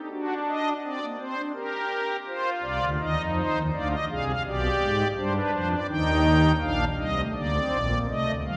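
In a steady, straight triple metre, this short cut from a longer baroque-style three-part fugue unfolds with a serious, solemn mood, carried entirely by a solo pipe organ. Its strings celeste registration gives a soft, shimmering sound with a romantic voicing, sitting up front and spanning from Bb1 up to G5. Harmonies move from D7 through Gm, Cm and Dm7b5 toward Eb and a rootless Gm/Bb, all bathed in a long, wet church reverb over the 8.6-second passage.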